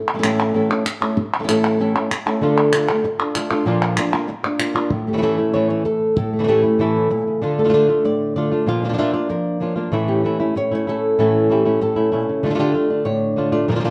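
A roomy studio sound with a moderate, lingering reverb frames this brief excerpt of fiery yet mournful flamenco in a straight four-four pulse. Two fingerpicked acoustic flamenco guitars sit up front, their warm tone marked by audible finger squeak. One carries the melody from the very start, ranging from deep bass notes up into the high register. Crisp palmas hand claps, compressed and a little saturated, drive the opening alongside it before falling away at 4.9 seconds. The second guitar joins with stabbing chords at 2.4 seconds, and the two guitars carry the rest of the piece over a repeating cycle of A, Dm and Bb.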